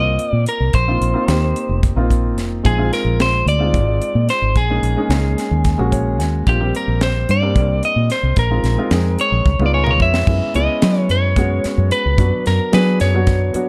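Electric jazz fusion in 7/8, bright and soaring, with a slightly broken-up, compressed lead guitar carrying the melody up front, a grand piano with audible action noise accompanying through suspended and extended chords and adding fills at 5.7 and 9.5 seconds, a foam-muted fingered electric bass sitting prominently underneath, and a polished drum kit with a high-tuned snare and punchy kick that plays a fill at 9.5 seconds alongside the piano's, set in a dark production with light small-room reverb.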